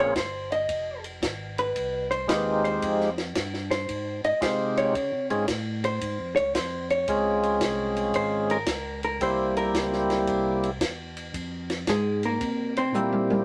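A dark, compressed hollow-body jazz guitar takes a clean, picked solo up front for the whole 13.4 seconds of this late-night, soulful soul jazz organ trio fragment in swung 4/4. Beside it, a percussive tonewheel organ carries the melody with key click and a slow rotary speaker, while a fat, lightly overdriven organ bass with chorus vibrato moves through minor-ninth, seventh and major-seventh chords. A dry cocktail drum kit with a high-tuned snare, tight kick and shadowy cymbals enters at 0.2 seconds and closes with a fill at 12.9 seconds, all set in a small, intimate room.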